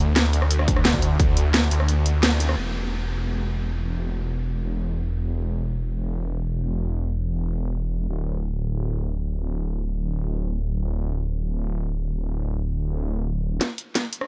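A snarling, distorted sawtooth bass dominates this dark, mechanical slice of technical drum and bass, its detuned unison voices growling low and up front with a fast attack, a moving notch and sidechain pumping. The excerpt opens on a drop, where layered electronic drums hit hard: a cracking snare, bright hi-hats and rim clicks, re-recorded in a small room and filtered to a duller edge, sit over a punchy, tape-warm electronic kick. The kick falls away at 1.9 seconds, a full-band accent lands just after, and the kit stops at 2.6 seconds. From there the bass carries the piece alone in free time, sustained and compressed, until 13.6 seconds. A short drum fill with a brief return of the kick closes the fragment, all under a light reverb and tuned slightly sharp to A4 = 445 Hz.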